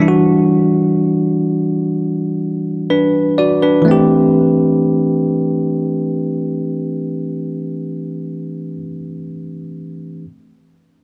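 Floating in free time, this late-night R&B fragment in A dorian, tuned to A4 = 438 Hz, carries a longing mood through a lone bell-like tine electric piano that plays accompaniment from 0.0 to 10.3 s across E3 to D5, its clean, bright tone sitting up front in a moderate plate reverb with a 2.8 s tail as the harmony moves from Em9 to Am7 at 3.9 s.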